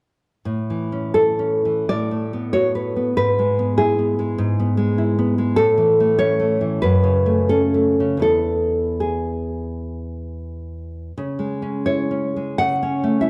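A solo nylon-string guitar, fingerpicked and up front, opens this brief fragment of a romantic classical piece, its dark, acoustic tone carrying a nostalgic yet sunny mood in a loose, rubato 4/4. Finger squeaks come through in the playing as the harmony moves from A through Bm7/A and E/G# toward F#m, E and C#m, settling on A/C# near 12.6 seconds. A wet recital hall reverb surrounds the guitar, giving the production a mellow, enveloping glow.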